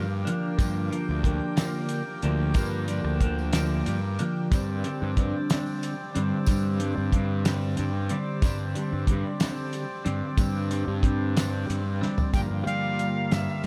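A dark, mysterious psychedelic rock excerpt in G minor opens with a breathing, nasal harmonium holding sustained chords beneath a clean, phased and double-tracked electric guitar riff and a round, fuzz-overdriven fingered bass, moving from Gm7 to Csus2/G in a slow 6/8 at 61 BPM. A cloth-damped, thuddy drum kit with a fat snare and tight kick joins at 0.3 seconds, and a jingly tambourine sits in the background from 0.6 seconds. A drum fill leads into a closing passage at 12.3 seconds, where an airy, reedy concert flute with vibrato and analog delay enters on a brief melody over Gm7, all under light reverb.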